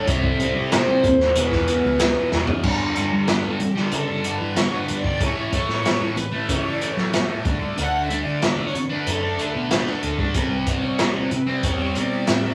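Psychedelic rock at 93 BPM, a kaleidoscopic, trippy cut from a longer piece, where an overdriven slide guitar played with fingerpicks sings a brief melody until 2.3 s over a bright, double-tracked fuzz guitar riff with distortion and phaser, a round, foam-muted bass, very quiet damped congas and a gritty, saturated breakbeat kit with dark cymbals, whose fill at 2.3 s hands the spotlight to a clear symphonic string section with light vibrato for an intense solo moving through G5, A, D and C, all in a rough, small rehearsal-room sound.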